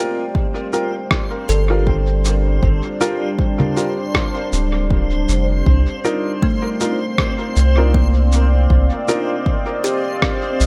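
A light reverb and digital ambience give this short, spacious and hazy ambient dub excerpt its soft glow, set at 79 BPM in C dorian with a gentle 16th-note swing as a Gm7 chord gives way to Cm11 at 5.7 seconds. A deep, moody pad of detuned sawtooth unison with chorus holds sustained chords beneath a woody, ringing kalimba arpeggio and mellow upright piano stabs, both carrying dub echo, while a reversed, granular texture adds a dreamy, bright shimmer. An up-front, tape-warm electronic kick starts at 0.3 seconds, joined by muffled, sampler-style shaker, rim click and congas with dub echo, and a round, soft sub bass arrives at 1.5 seconds to anchor the low end.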